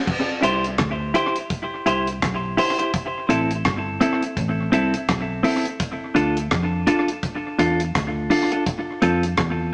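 Roots reggae at 84 BPM in C major, laid-back and swung, with a deep, dry drum kit of kick, rim click, hi-hat and crash carrying tape echo, a clean, compressed picked electric guitar also treated with tape echo up front, and a dark, round, foam-muted fingered bass moving through C, Am, Dm and F, played live in one room with a small-speaker sound and cut from a longer piece.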